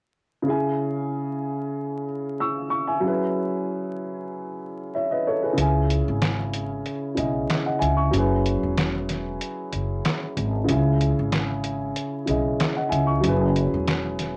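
Boom-bap hip-hop in C# minor at 94 BPM with a swung 16th feel, this gritty, dark excerpt opens at 0.4 seconds with a dark upright piano alone, its boxy, intimate tone carrying audible action noise and long sustain through filtering and cassette tape coloring over a C#m to F#7sus4 progression. At 5.6 seconds a woody, pizzicato upright bass with steel strings and a compressed, pitched-down sampler-style drum kit of handclaps, hi-hat and a muffled, medium-tuned snare join, all sitting up front. Light reverb, a home cassette character and vinyl crackle give the whole piece a worn, lo-fi feel.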